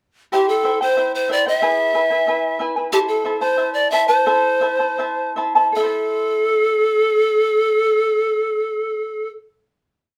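A small, lively room with a close, up-front sound frames this brief, wistful Andean folk piece, played live by a duo in 2/4. A breathy, bright bamboo pan flute carries the melancholic melody in short song-like motifs, its tongued notes showing a reedy chiff and gentle vibrato, while the acoustic charango shimmers beneath with doubled strings, fingerpicking and rhythmic strumming of open chord shapes. The pair slows from 2.9 to 5.8 seconds and then settles onto a final chord that rings until just past 9 seconds.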